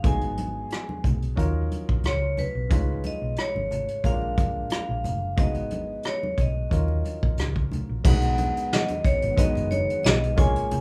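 This rough home demo sits in a small room, with light reverb over the mix. The music is lush, 1970s-style soul, bittersweet and cinematic, with its sixteenth notes lightly swung. A bright, metallic vibraphone played with hard mallets and its motor off carries the melody in a ringing upper register, while a clear, polished baby grand piano supplies the accompaniment beneath it. A round, amped hollow-body electric bass, fingered, holds the low end. A vintage brush kit sits up front with dark cymbals, a tight kick, rim clicks and a rolled-off top, joined by medium-tuned congas in the background. At 8.7 seconds a very quiet, silky string machine enters with slow-attack sustained chords, ensemble chorus and a moving notch, over the B6 chord that closes this excerpt from a longer piece.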